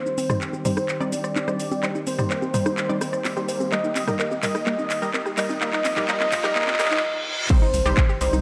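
Driving and dreamy, this progressive house passage in C minor moves at 127 BPM in a straight 4/4, cut from a longer piece and built almost entirely as a build-up. A thick, dark unison lead carries the melody with vibrato and a sub octave, riding a lush, warbling pad that sustains chords through Cm, Eb and Bbsus4 until 7.0 seconds. A round analog pluck plays arpeggios in the background and a punchy, detuned unison pluck adds stabs, with filter sweeps opening both plucks. The lead, the pad and both plucks pump with sidechain, and the lead and plucks trail digital delay, with chorus on the pad and the arpeggio pluck. A tape-warm house kit with metallic hats, handclaps, shaker, ride and crash is joined by a dry analog drum machine playing congas, rim clicks and toms in a drum fill. A very quiet riser climbs from 3.2 seconds, and a reverse cymbal follows at 6.6 seconds. After a brief stop, an up-front electronic kick lands with the impact at 7.5 seconds as the chords return to Cm. 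A deep, mellow wave-folded bass follows on C2 at 7.7 seconds, all set in a lush hall reverb.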